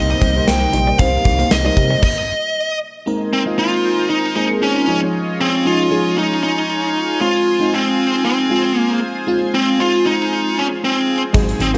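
A high-gain lead guitar, dark, distorted and up front, carries the melody across this dramatic, moody 1980s-style pop excerpt in F minor at 116 BPM, with a light 16th-note swing, over a lush, dreamy FM electric piano and a shimmering, retro pulse-width pad. A punchy gated drum kit with bright cymbals, a round FM bass, a very quiet funky polysynth comp and a faint clean direct guitar drive the opening until 2.0 seconds, with the drums carrying on to 2.2 seconds. They then drop out for a stop before the chords move through Abadd9, Dbadd9 and Fm. They return at 11.3 seconds, all set in a small room with light reverb.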